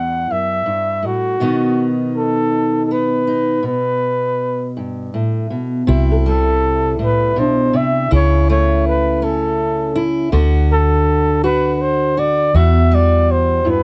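Melancholic and reflective, this acoustic folk-pop ballad in 6/8 is cut from a longer piece. A breathy flugelhorn carries the melody up front from the start, its mellow, whispered tone shaded with vibrato and a soft attack in an intimate, jazz-style solo. Beside it, a fingerpicked steel-string acoustic guitar with fresh strings gives bright accompaniment, also placed up front. At 5.9 seconds a felt-muted upright piano joins in the background with dark, short-sustained arpeggios and audible action noise, while a vintage muted electric bass enters with a round, punchy, foam-muted sound. Light reverb and close microphones give the recording fine detail.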